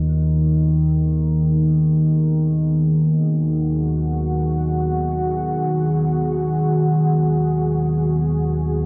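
Unfolding in free time, this desolate, unsettling dark ambient drone rests on an up-front, warbling analog drone with chorus that holds throughout, while a very quiet, eerie, inharmonic synth bell plays arpeggios until 4.1 s and a deep, moody pad with chorus and its own reverb fades in with sustained chords from 2.5 s, all steeped in a cathedral reverb with a long tail.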